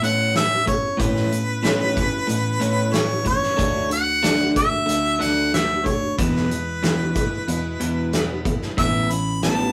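This rough rehearsal-room recording has a saturated glow and a short, wet studio reverb, and it is cut from a longer piece of folk rock with a heartland rock lean. At a straight 93 BPM in 4/4 and in A major, the mood is nostalgic yet hopeful, moving through Aadd9, D and E before returning to Aadd9 at 8.8 seconds. Up front, a harmonica in a pop style carries the melody with a light vibrato and a punchy, roomy tone. Beneath it, an electric guitar through a small old amp plays a compressed, slightly broken-up picked riff, while a plugged-in steel-string acoustic guitar picks out the accompaniment in the background. A hollow-body short-scale electric bass adds a dark, round, fingered low end, and a loose indie drum kit with a punchy kick, a medium-tuned snare and hi-hat sits forward in the mix with a rolled-off top.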